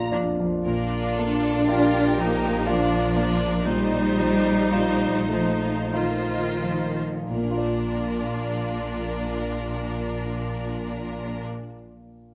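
Moving in a rubato 3/4 at a slow 41-61 BPM, this brief classical passage in Bb major has a lush, passionate mood, and it gradually slows through its first 7.3 seconds. A concert grand piano with deep bass and long sustain carries the melody alongside a clear, intense violin section, whose bowed vibrato lines sit in a narrow upper register. Beneath them, a second violin section adds a focused, smooth-topped second line from the background, while a rich viola section supplies accompaniment. The cello section and the studio double bass section hold the bass with expressive vibrato, both sounding distant, the double bass anchored on a low Bb. The harmony moves from Bb to F7 over Bb at 3.7 seconds and resolves back to Bb at 7.3 seconds, where a new section begins, all heard through close, detailed microphones in a recital hall with moderate reverb.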